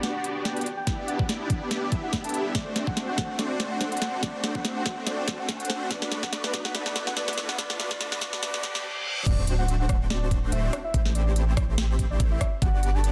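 A dense, heavily limited modern mix with light reverb carries this playful, euphoric future bass excerpt in a half-time, lightly swung feel. Huge, lush supersaw chords moving through a low-pass filter sweep sit beneath a soft, round octave-layered synth lead with chorus, vibrato and delay, above a deep, mellow 808-style bass, all three pumping with sidechain compression. Meanwhile a crisp, overdriven trap kit with a sharp snare rolls through a fill alongside a very quiet riser, reverse cymbal and sub drop; a knocking electronic kick enters at 0.9 seconds, and the drop lands at 9.3 seconds with an impact.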